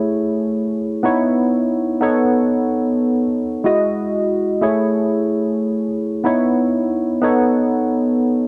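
A bright, barky tine electric piano plays alone from the start, lightly overdriven through a combo amp and shimmering with analog chorus, set up front in a dry, close 1970s-style studio sound with a touch of reverb. This smooth, cinematic soul excerpt moves at 92 BPM in 4/4 with a gentle sixteenth-note swing, drifting through lush chords such as Amaj7, C#m9, B9 and Emaj9 over its 8.5 seconds.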